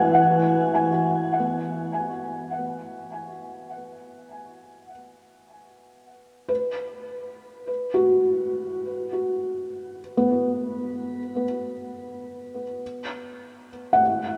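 The recording sits in a drenched cathedral reverb with a 5.4-second decay, so every note hangs in a vast, glowing space. This short ambient excerpt, cut from a longer piece and tuned to A4 = 441 Hz, feels weightless and luminous. Its only instrument is a felt-muted upright piano playing arpeggios between B3 and G#5, its thick felt giving a dark, intimate tone with short sustain and audible action noise close up front. Delay and shimmer reverb on the piano stretch those clipped notes into a soft halo. The piano fades in from 0.2 seconds and keeps rising to the end at 14.4 seconds, with a B5 chord settling in at 6.5 seconds.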